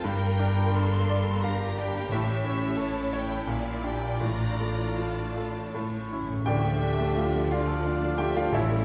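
In a rubato 3/4 that moves at roughly 77-90 BPM, this short passage from a longer romantic movement for piano and orchestra unfolds in D minor with a passionate, tragic cast. A bright, brilliant baby grand piano carries the melody up front with long sustain, joined from the start by a focused, distant violin section on the same line, while a second, lush violin section with a smooth top sings a second line. Beneath them, a smooth, even viola section fills in the accompaniment in the background, a very quiet cello section and a close double bass section hold the bass, and soft-mallet timpani with a round tone enter at 2.1 s, adding a fill just before the shift. A warm, very quiet clarinet enters at 6.4 s, and at 6.5 s the harmony settles onto D minor as a mellow, roomy cor anglais joins it on a second line, over tight, punchy sustained chords from a French horn section. The whole ensemble sits in the reverb of a scoring stage, heard from further back in the room, and the passage is cut off at 8.8 s.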